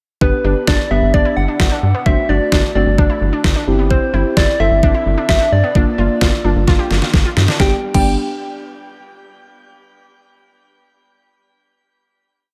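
Synth-pop in G major at 130 BPM, upbeat yet wistful, this short whole piece sets a round, gentle FM lead playing motif-based call phrases with chorus, shimmer reverb and dub echo over muted, felt-like synth keys pushing close-voiced chords, a lush, detuned unison pluck ostinato, a rubbery, bouncy square bass and an up-front, overdriven pop drum kit with a knocking kick and deep snare, moving through G, D/G, C/G and Bb/G before a drum fill at 6.7 seconds leads to a final G chord at 7.6 seconds in an echo-heavy mix.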